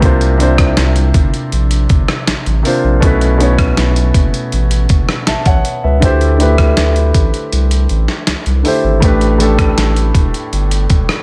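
A grand piano, a saturated sub bass and a dusty, sampler-style drum kit all start together in this moody, sensual contemporary R&B piece, a short cut from a longer track. The piano plays an intimate accompaniment that sits up front, with its action noise audible, moving through suspended ninth chords from C9sus4 to B9sus4, D9sus4 and A9sus4. Beneath it, the sub bass is deep and thick, a sine tone with a fast attack and long sustain. The compressed, gritty drums bring a thumpy kick, a fat snare, rim clicks and hi-hat, sitting up front yet carrying the air of a large room. A break arrives at 7.5 seconds and lasts until 9.0 seconds, and the overall sound stays dry and close.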